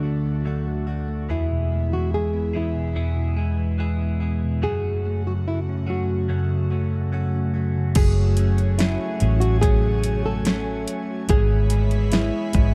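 A dark, full-bodied nylon-string guitar carries the melody from the start, set over a bright, bell-like tine electric piano, a soft, breathy pad with chorus and slow attack, and a quiet, compressed clean electric guitar picking arpeggios through phaser and delay. This heartbroken, melancholic pop ballad sits in F# minor at a slow 72 BPM in a straight 4/4, moving from D to E and settling on F#m. At 8.0 seconds the arrangement fills out as a round, foam-muted vintage electric bass and an overdriven, punchy electronic drum kit arrive up front, with fat snare, metallic hi-hats, kick and crash cymbal. The harmony then shifts to F#madd9 and on to C#m7/G#. The dark production is wrapped in light digital reverb, and the clip is cut from a longer piece.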